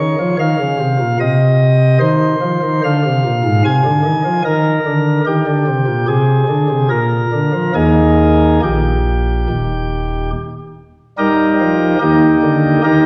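A classical chorale-style piece for solo pipe organ in Eb major, serene and majestic, moving at 73 BPM in 4/4 with a rubato feel in this brief 13-second cut from a longer work. The organ's light, bright flute stops carry a baroque voicing with audible chiff, sitting up front and spanning Eb1 to Ab5 as the harmony passes through Cmadd11, Bb7 and Ab/C before settling on Eb at 7.8 seconds. A wet recital hall reverb surrounds the sparkling tone, while a worn cassette-tape quality adds a warbling pitch drift.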